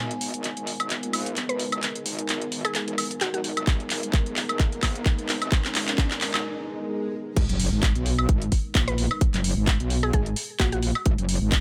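Gritty digital ambience frames this aggressive bass house excerpt at 130 BPM in G# minor, where a metallic, saturated wobble bass and a resonant, evolving sawtooth pad hold a G#madd9 chord under a warbly lo-fi tape pad. Warm-hatted garage drums with handclaps and woodblock fill the build-up alongside a riser, and a woody mallet-like pluck with delay appears at 1.5 s before a tight, up-front electronic kick joins at 3.7 s, leading through a brief break into the drop and impact at 7.4 s, after which the pluck returns at 8.9 s.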